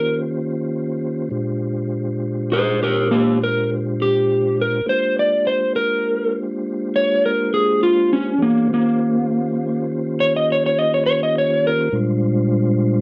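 Rollicking and gritty, this slow blues moves at 68 beats per minute in a straight 12/8, centred on Bb mixolydian and cut from a longer piece. An electric slide guitar carries the melody from the start, its dark, slightly broken-up tone sitting up front with a slapback echo, and it stops at 11.9 seconds. Alongside it, a mellow tonewheel organ, also up front, holds sustained chords through the full 13.0 seconds, soft and flute-like, shimmering with chorus vibrato and a fast rotary speaker. The harmony leans on rich Eb13 and Bb13 chords, returning to Eb13 at 8.4 seconds before settling back on Bb13. The sound is dry and close, with little reverb, in the manner of a 1970s studio recording.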